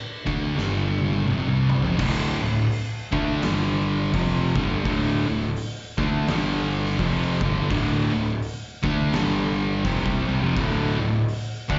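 Hypnotic and sludgy, this stoner and doom metal excerpt crawls at 84 BPM in D minor with a swung 4/4 feel, as two thick fuzz guitars (one up front, one in the background) grind through a riff over punchy, overdriven fuzz bass and an oversized low-tuned drum kit with a fat snare, punchy kick and gritty saturation that plays a fill from 0.6 to 2.0 seconds, before a tight, bright, double-tracked distorted guitar with slapback echo joins in the background at 2.0 seconds, all heard through a live club PA with dull, muffled highs and a hint of club reverb.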